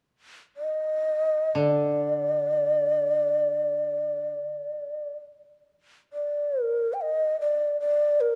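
A breathy, hollow shakuhachi opens this calm, austere fragment of Japanese traditional music at 0.6 s, playing a free-time melody between Bb4 and G5 with vibrato, tongued attacks and chiff, close-miked and up front, while a bright, woody koto on fingerpicks sits quieter beneath it on a dry D3 from 1.5 s to 4.3 s, all tuned to A4 = 441 Hz and set in a moderate recital-hall reverb with a dark production.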